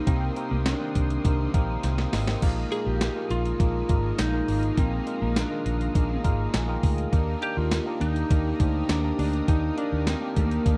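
Nostalgic and glossy, this short cut of 1980s-style pop sets a slightly broken-up, compressed lead guitar melody with slapback echo over a thumpy gated drum machine with crash, hi-hat, snare and tambourine, a dark, round, foam-muted bass up front, a clean tine electric piano that adds a fill at 6.2 seconds, a smooth detuned sawtooth pad with chorus, and an overdriven electric guitar with ensemble chorus tucked in the background, all moving from Cm7 through Bb7sus4 to Ebmaj7 in a dry, close studio sound.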